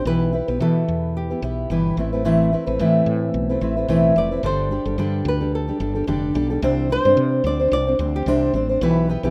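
Heartfelt and carefree, this short acoustic pop clip in C major moves at 110 BPM in 4/4 with a light sixteenth-note swing, passing through Em/B, Amadd9 and Gsus2 before its second section arrives on Csus2 at 6.6 seconds. A full-bodied, jumbo fingerpicked steel-string acoustic guitar sits up front as the accompaniment, joined by a round, hollow-body fretless electric bass with a woody, amped tone, while a flamenco guitar carries the melody with audible finger squeak until 8.5 seconds. Light reverb and small room ambience color the rough home-demo mix.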